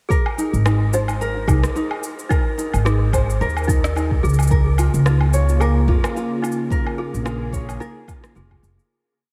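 A small room's light reverb holds this short, hopeful and playful folktronica piece in Ab major at 109 BPM, where a woody, up-front pizzicato upright bass plays a dub-style line under a fingerpicked tenor ukulele's alternating-bass arpeggios and a clanky, bell-like toy piano, slightly out of tune, looping a 5-step figure that drifts against the bar through ensemble chorus and diffuse ambient delay. A deep, soft electronic kick and a clicking found-sound beat of shaker, woodblock and rim, both tape-warm and re-recorded in a large room, carry a lightly swung 16th-note groove over Abadd9, Db6 and Bbm7. At 4.9 seconds a warbling, nostalgic, detuned tape-like pad with a slow attack and chorus joins, just before the fade-out that runs from 6.0 to 8.9 seconds.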